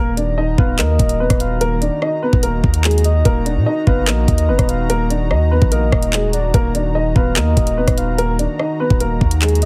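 Tense and ominous, this short drill cut from a longer hip hop piece moves at 146 BPM in a half-time feel on a single Eb minor chord, with a dark, worn grand piano carrying the melody through a low-pass filter, its action noise audible and its tone boxy and intimate, over a smooth, detuned sawtooth pad with chorus. A deep, sine-toned 808-style bass holds long decaying notes up front, while an overdriven electronic drill kit enters at 0.2 seconds with a knocking kick, bright hi-hats, handclaps and rim clicks. From 0.6 seconds a soft, round octave-layered synth lead adds a second line with vibrato, chorus and slapback echo, all within a dry, heavily compressed radio sound.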